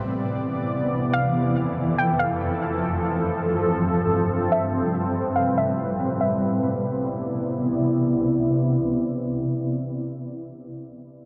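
Blissful and floating, this free-time hip hop excerpt in C major drifts on a cloudy, detuned granular pad that holds sustained chords up front from the start to 10.3 seconds, moving through Cmaj9, Fmaj7, G9sus4 and Am9 before settling back on Cmaj9 as a filter sweep runs through the opening 6.2 seconds. A soft, round, dark pluck carries a small melody between 1.1 and 7.4 seconds, colored by chorus, tape echo and a low-pass filter. The whole sits in a huge ambient reverb with a long 7.3-second tail.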